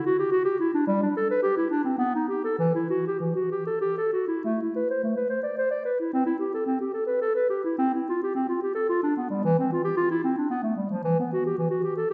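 A mellow clarinet plays alone, up front, in this solemn, introspective baroque-style fantasia, a classical excerpt cut from a longer piece in 3/4 with a rubato feel between 94 and 115 BPM. It ranges from E3 to D5, beginning in E minor and moving to A minor at 4.4 s. The recital hall reverb is wet, with a 1.5-second decay, and the top end is soft and rounded.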